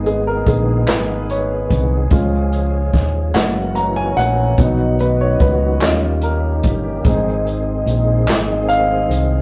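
Slow gospel in a reverent yet jubilant 6/8, cut from a longer piece, where a clear, intimate grand piano with audible action noise takes the lead throughout over a reedy tonewheel organ on a slow rotary speaker with chorus vibrato and key click, a vintage French horn section holding tight chords in the background, a round, punchy fingered electric bass and a swinging big-band drum kit with a boomy kick up front, while hollow group handclaps join at 0.9 s, all caught in a rough rehearsal-room recording with tube saturation and a small room's moderate reverb.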